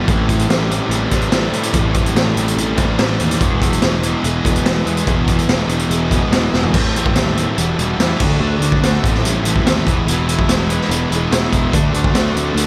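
Indie rock at 144 BPM in A dorian, this restless, moody excerpt from a longer piece runs about 12.7 seconds in a straight 4/4. Two fuzz guitars drive the riff from the start: one bright, compressed and picked, the other darker and set in the background, thickened by a lush chorus. Beneath them a fuzz-toned picked electric bass sits round and punchy, its overdrive adding grit to the low end. A raw garage drum kit, up front and saturated, pairs a high-tuned snare with a boomy kick and a rolled-off top, and it plays a fill at 6.5 seconds before the second half begins at 6.7 seconds. Floating very quietly above it all, a glassy, ethereal glass harmonica holds slow-attack chords through the changes from Am7 and E to Em7 and D7, all under a light reverb.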